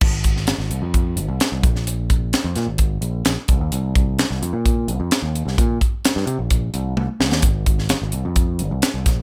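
Math rock meets midwest emo in this intricate, wistful 9.2-second fragment at 130 BPM in a straight 4/4, carried by an overdriven, picked electric bass with a dark, round tone alongside a crisp, airy fusion drum kit. Both sit up front in a dry, polished studio sound, the drums offering a high-tuned snare, a punchy kick, hi-hat, toms and crash cymbal. A brief drum fill at 7.0 seconds stands out near the end.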